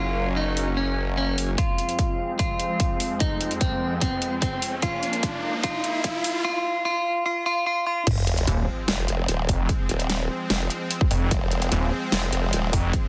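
Heavy wobble dubstep with a chaotic, menacing half-time feel, cut from a longer piece, opens with a clean, picked electric guitar melody through dub echo over a lush, airy supersaw pad pumping with sidechain and a brief formant-sweep wobble bass, joined at 0.6 s by a dubstep drum kit with a huge snare and metallic hats; then a punchy electronic kick arrives and drives a filter-swept build-up with a riser, sub drop and drum fill until the drop at 8.1 s, where the wobble bass returns beside a snarling, growling distorted saw bass, set in moderate room reverb and a dense, heavily limited master.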